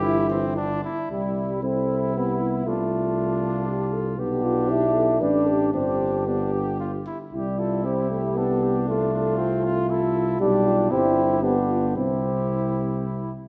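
A full brass quintet sounds together from the opening moment of this classical excerpt, setting a noble, triumphant mood in a triple metre with flexible, rubato pacing. Two mellow trumpets carry the upper lines: one plays the melody with a soft attack, while the other sings a second line beneath it with vibrato. Alongside them, French horn and euphonium fill in the accompaniment, both sounding distant and roomy with a light vibrato, and the euphonium drops out at 13.1 s just before the others. The tuba anchors the bass with a warm, up-front presence that gives the ensemble a firm floor. The harmony moves steadily between C, Dm7/C, G/B and G, returning to C, and a wet recital-hall reverb surrounds the group with a generous sense of space.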